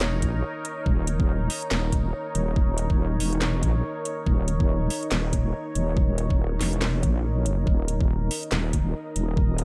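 A dry, close-sounding cut from a longer deep dubstep track with a brooding, meditative half-time swing, where a saturated, detuned wobble bass sits up front beneath a moody, wave-folded ambient pad holding slow-blooming chords in its own built-in reverb, while a tape-tinged garage kit of cracking snare, handclaps and metallic hi-hats plays from the start and a knocking electronic kick enters at 0.2 s, with a brief break between 0.4 and 0.9 s.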